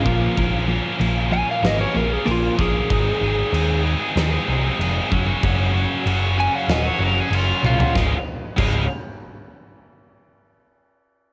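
A home recording on cassette with light reverb gives this short cut from a longer quiet-loud alternative rock piece a homespun, slightly worn character, and its mood is restless and bittersweet in a straight 4/4. A lightly driven lead guitar, twangy and slightly broken-up with tape echo, carries the melody as a solo that runs to 7.9 seconds. Beneath it, a scooped high-gain guitar sits up front with a distorted riff, while a clean, compressed twelve-string electric guitar adds bright arpeggios only until 2.9 seconds. A picked electric bass with an amped edge anchors the low end, and a huge arena drum kit with a fat snare, punchy kick, crash cymbal and toms fills out the big room sound. The harmony moves from Bbm through Ab and Gb5, and a drum fill leads into a new section that lands on Db at 7.9 seconds.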